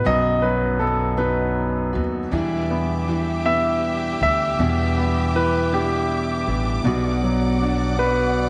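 A clear, up-front concert grand piano carries the melody in this melancholic, dramatic six-eight pop ballad excerpt, its long sustain hanging in a wet plate reverb. Beneath it, an intimate upright piano with audible action noise plays the accompaniment, a fingerpicked steel-string acoustic guitar with finger squeak and slapback echo spins arpeggios in the background, and a woody, growly pizzicato upright bass holds the low end. At 2.3 s a rich studio string section enters with expressive bowed chords, sustained and full of vibrato and portamento.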